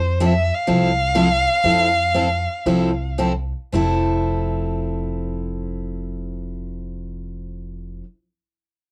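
A swinging, lively excerpt of acoustic string swing in the jazz manouche style, cut from a longer piece and slowing down over its opening seconds. A rich, focused violin with vibrato and a smooth top carries the melody until 3.2 seconds, while a woody, thumpy pizzicato upright bass on gut strings sits under a bright, full-bodied picked steel-string guitar that enters at 0.2 seconds on an opening Fmaj7. All three parts sit up front in a moderate studio reverb, with the character of a home cassette recording.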